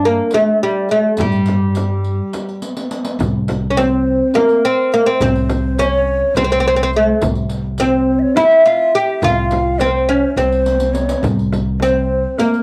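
A homespun cassette recording in a modest small room carries this longing, soulful excerpt of a Turkish makam ensemble at 209 BPM in 7/8, settling into C makam hicaz from 3.2 s. A bright, fretless oud with double strings leads up front with a cassette-tinged tone over a pizzicato upright bass with steel strings and transformer saturation, while a very quiet clay darbuka, a deep frame drum in the background and a distant jingling riq fill out the percussion with occasional drum fills. A breathy ney enters at 3.8 s as a soft, vibrato-laden second line in the background.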